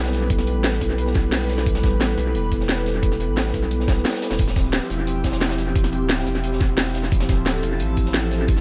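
This excerpt of melancholic, dreamy liquid drum and bass opens with an airy, breathy pad holding sustained chords over a deep, thick saturated sub bass, while a mellow vibraphone with soft mallets plays ringing arpeggios through analog delay, its medium motor vibrato adding shimmer. Set at 176 BPM in a straight 4/4 and in D dorian, the music moves from an Asus2 chord to a Dm11 at 4.4 seconds, with the whole passage staying at drop intensity. A gritty breakbeat kit with a high-tuned snare sits in the background with a dark, rolled-off top. It is joined at 0.1 seconds by an up-front electronic kit with a cracking snare, bright hats, crash cymbal and analog delay, and at 0.3 seconds by a knocking, layered electronic kick. The detuned pad carries chorus and phaser and breathes with sidechain pumping. The mix is echo-heavy under light studio reverb, with the sub bass and the electronic kit pushed forward.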